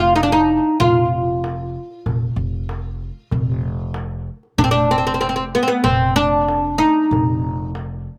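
This is Arabic maqam ensemble music in a melancholic, longing mood, cut from a longer piece and moving in a straight 4/4 feel. A bright, fretless oud with double strings carries the melody up front, its plectrum-plucked lines ranging from B3 to F4 and trailed by a slapback echo. Beneath it, a pizzicato upright bass with gut strings holds a low F1, dark and thumpy, while a clay-shell darbuka with a natural skin adds warm percussion under soft hands. All three acoustic instruments play together from the opening, and the music moves into a second section at 4.6 s. The oud stops at 7.7 s, shortly before the darbuka and bass finish, and the dry sound was captured outdoors.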